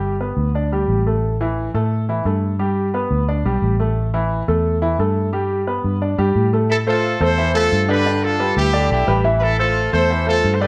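Driving and danceable, this Latin excerpt in A minor moves at a brisk 176 BPM, with a clear, worn concert grand piano laying down accompaniment over a dark, round, foam-muted electric bass, both up front from the start as the harmony rocks between G and A5. At 6.7 seconds a bright, punchy horn section enters with the melody, its pop-style ensemble sound carrying light vibrato and a smooth top as the chords shift to alternate A minor and G. A moderate large-studio reverb gives the whole a roomy sheen.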